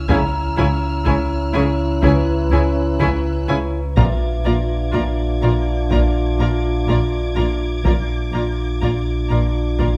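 A deep, full sine sub bass drone, clear French horn chords and a distant, high violin texture open this uneasy, eerie suspense film cue at 62 BPM in 4/4, tuned to A4 = 444 Hz, with the harmony moving from C#m to Bb at 4.0 seconds. Muted strings played con sordino join almost at once: a veiled violin melody, a lush second violin line, rich viola accompaniment, and dark cello and double bass parts beneath, while a metallic, ringing vibraphone with fast motor vibrato sits in the background. A very quiet, band-limited taiko ensemble struck with hard sticks adds a vintage edge, and close, detailed microphones with light reverb keep the sound intimate.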